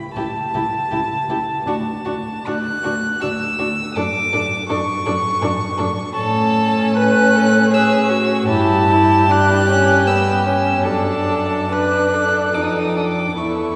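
A dark, intimate violin opens this slow, lyrical string quartet movement at 0.0 s, carrying a sul tasto melody with light vibrato and a soft attack, and at 0.2 s a second violin, a nasal, woody viola and a pure, floating cello join beneath it. In a rubato 3/4 at 66-83 BPM, the romantic music begins in D major and turns to A major from 6.2 s, with the distant-sounding cello holding the bass under the bowed inner parts. The ensemble sits in the long, wet reverberation of a church, in a passage cut from a longer warm-hearted piece.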